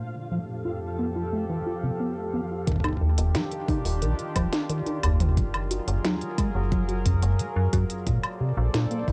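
Glitchy, intricate IDM at 89 BPM, cut from a longer piece and recorded at home on cassette, opens with a warbling, nostalgic pad under a filter sweep, holding chords from Fadd9 through Ebmaj9 and Gbmaj9 to Bbmaj9, beside a flickering grainy texture, with a rubbery, dark acid bass arpeggio joining at 0.3 seconds; at 2.7 seconds the texture stops as a deep electronic kick and an organic electronic kit of woody snare, smooth hi-hats, toms and woodblock enter in a small room, and from 3.2 seconds an up-front metallic FM bass with a fast, decaying attack joins.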